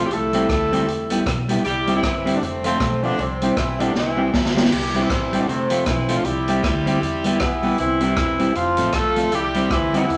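This joyful, bouncy ska excerpt opens with a mellow horn section carrying the melody up front, its tight, octave-doubled lines smooth on top, alongside a dark, clean semi-hollow electric guitar whose fingered accompaniment carries a slapback echo. A woody pizzicato upright bass sits beneath them on the bass line, while a swinging big-band drum kit enters at 0.1 seconds with crash cymbal, hi-hat, boomy kick, rim click and a medium-tuned snare, sounding natural and close. The swung eighths give the groove an easy lilt as the harmony moves among C, E minor and F. A drum fill from 4.0 to 4.7 seconds marks the turn into a repeat of the opening section. The large studio reverb is wet, with a 1.2-second decay, and the passage is cut from a longer piece, ending at 10.2 seconds.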